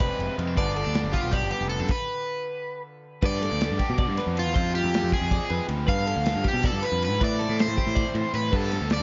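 A crunchy, overdriven lead guitar carries the melody up front in this playful, intricate math rock and midwest emo excerpt, which moves at 317 BPM in a straight 7/8 over chords such as Fm6, G9 and Am9. A growling, overdriven picked bass sits just as far forward, a bright, clean, compressed twelve-string guitar plays arpeggios, a biting, double-tracked overdriven guitar plays a riff in the background, and a fingered, twangy guitar accompanies quietly through the opening section, which closes with a stop from 1.9 to 3.2 seconds. A dark, smooth acoustic kit with a tight kick, medium-tuned snare, ride and crash rounds out a dry, close mix whose top end is rolled off.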